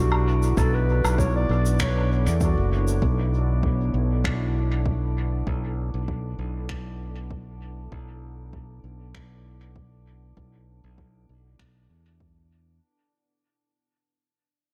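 A lightly swung 4/4 groove at 98 BPM opens this meditative, spacious ambient dub fragment, with woodblock, shaker and finger snaps carrying a natural hall sound and dub echo, while a punchy electronic kick enters at 0.6 s in the background. A bright fingered electric bass sits up front beneath a deep, dark, detuned pad with slow attack, chorus and reverb, and a faint, glassy texture of drifting overtones hovers on a single D4. A mellow, smooth-topped clarinet sings a brief solo melody drenched in dub echo until 3.0 s, as the harmony shifts from Bm7 to D6/B in an echo-heavy mix that fades out throughout.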